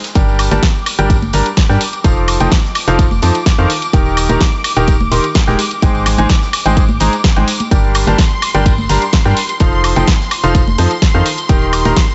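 A straight 4/4 groove is driven by a punchy electronic kick, layered with a house kit of snare, bright hi-hats and woodblock, a very quiet, distant acoustic kit on ride and snare, and tambourine and congas sitting close and dry in the background. Over this bittersweet, soulful piano house, a brilliant grand piano carries the up-front riff with audible action noise, digital delay and a low-pass filter, while a hollow, organ-like FM bass and a silky, chorused string pad both carry sidechain pumping. The chords move through Gm, F7, Eb and Abmaj7, and this cut from a longer piece sounds dry, with its highs rolled off.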